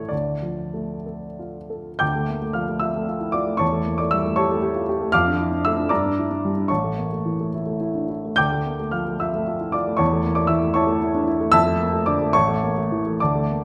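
In a rubato 6/8 lilt at 62-81 BPM in dotted quarters, this passionate, stormy romantic character piece in D minor is a fragment cut from a longer work, played by a solo baby grand piano, intimate and up front, with audible action noise, ranging from A1 to G6 and moving between D minor and A major harmonies in a recital hall's wet 1.4-second reverb.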